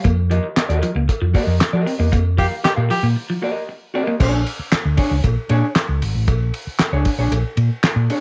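A round, amped hollow-body short-scale bass sits up front in this playful, energetic funk excerpt at 116 BPM in a straight 4/4, fingered low and dark beneath an F9sus4 chord that moves to Bb7#9 at 4.2 seconds. A cloth-damped, thuddy drum kit drives alongside it, dry and up front, with a fat snare, tight kick, handclaps, hi-hat and dark crash and ride cymbals whose top is rolled off. A metallic cowbell rings in the background, and a clean, fingered hollow-body jazz guitar adds dusky accompaniment higher up. A clean, picked semi-hollow guitar carries the riff until 4.2 seconds, and a breathy tenor saxophone steps forward for a brief solo phrase from 2.4 seconds, with vibrato, scooped notes and a jazz inflection. The band hits accents in the second half of the opening section, including a break just before the second section, all set in light reverb and studio ambience.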